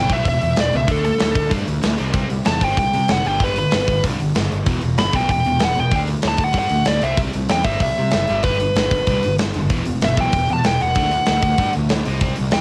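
A straight 4/4 beat at 191 BPM, struck from 0.1 s on an up-front, mid-forward metal drum kit with a tight kick and medium-tuned snare, drives this urgent, aggressive punk rock excerpt in E minor, as a double-tracked, picked rhythm guitar with cassette-tape grit and a fuzzy, overdriven picked bass churn through E5, D5 and C5 power chords into a G, Em, D, C cycle beneath a dark, distorted, bluesy lead guitar melody, the whole a home cassette recording with light reverb.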